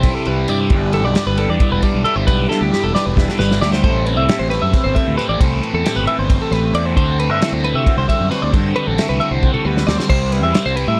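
Clean, compressed twelve-string electric guitar arpeggios sit high over a second twelve-string guitar playing lush, chorus-soaked accompaniment in this bright, intricate math rock and midwest emo excerpt at 268 BPM in 7/8, moving through Cmaj7, G69, Am9 and D9sus4 in G major. A double-tracked cranked stack guitar with overdrive and phaser carries the riff, while a growling, overdriven fingered bass and a loose indie drum kit with a tight kick and rolled-off top drive underneath, the drums adding fills at 2.5 and 9.4 seconds. The production is dark and dry, with little reverb.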